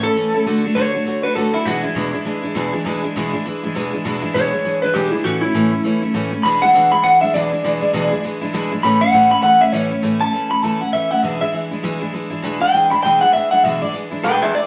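This cut from a longer piece has the hazy, lo-fi character of a live band on cassette tape, its top end rolled off and the whole room washed in a wet stone reverb. The mood is retro and upbeat: a swung rock tune in 4/4, tuned to A4 = 441 Hz. Up front, an electric guitar through a small old amp carries the melody with a twangy, slightly broken-up tone, ranging from E4 to B5. Beside it, a picked steel-string dreadnought acoustic supplies full-bodied, bright accompaniment, reaching down to E2, and both guitars play from start to finish. The chords move from D to E7 and then settle between A and E7, and a second section begins at 10.0 s and carries on to the cut at 14.7 s.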